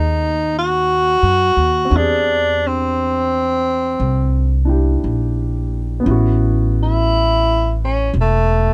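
A slow swing at 58 BPM in 4/4 sets up this smoky, intimate jazz ballad fragment, moving from G#m7 through E7alt to a resting A69. The mellow tenor saxophone carries the melody up front with a subtone and scooped notes, its tone somewhat distant and roomy, while a natural-sounding baby grand piano gives warm accompaniment and a woody pizzicato upright bass sits prominently underneath. The recording is dry and closely miked, catching fine detail across the whole 8.7-second passage.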